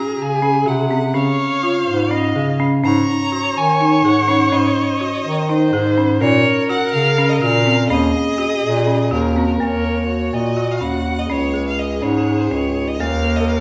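A reverberant recital-hall sound surrounds this short cut from a longer contemporary chamber piece, with a faint mains hum beneath the players. Set in Eb dorian and moving in a straight 7/8 at 248 BPM counted in eighths, the music feels pensive and hypnotic. A folk marimba struck with hard mallets gives woody, rustic arpeggios across its hardwood bars. Above it, a focused, distant-sounding solo violin carries the melody with vibrato, and a single viola shapes an expressive second line with portamento and a smooth top. The bass clarinet, entering at 0.2 seconds, sits up front with a clear, classical-style tone in the low register. Harmonies drift through added-ninth, suspended and seventh chords, and after the music turns to a new section at 9.6 seconds they settle on bare fifths.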